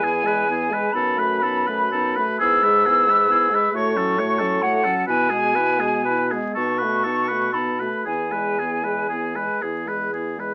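A hollow, pure-toned concert flute carries the melody up front, its tongued notes colored with vibrato as it sings high above the ensemble in this slow, lyrical and tender romantic movement for wind quintet. Just beneath it, a warm oboe with a soft attack and smooth top shapes a second line, also close to the listener. A mellow French horn, distant and roomy with light vibrato, and a clarinet set in the background fill out the accompaniment. A close-miked bassoon with light vibrato anchors the bass. The lilting compound metre is stretched by rubato as the harmony travels from E through B7 and back home to E. The flute falls silent at 9.6 seconds while the other four sustain to the close at 10.5 seconds, all within a moderate studio ambience tinged with vinyl crackle and a dulled top end, in a fragment cut from a longer piece.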